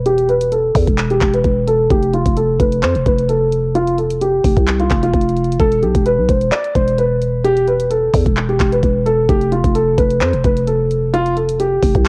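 A dark, boxy grand piano carries the melody from the opening, passing through a filter sweep until 5.6 seconds and a low-pass filter with cassette tape coloring, while a growling, buzzy 808-style bass sits up front beneath it. This brooding, hard-hitting trap excerpt settles into a half-time feel as the electronic drum kit joins at 0.1 seconds with a knocking kick, bright hi-hats and handclaps, also tinted by cassette tape. Light reverb and digital ambience surround this home cassette recording, which is cut from a longer piece.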